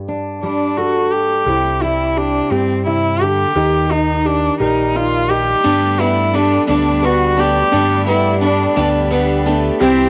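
A light-reverb home cassette recording carries this nostalgic, anthemic indie folk excerpt in G major at 58 BPM in 6/8, where a fingerpicked steel-string acoustic guitar with finger squeak opens under an intimate, sul tasto cello melody with tape echo, a woody upright piano's arpeggios and a round, punchy fingered electric bass join at 1.5 s to begin the build-up through C and Eb, and at 5.6 s a distant French horn second line and a shimmering, octave-doubled twelve-string guitar arrive on Gadd9 while the steel-string guitar stops at 7.7 s.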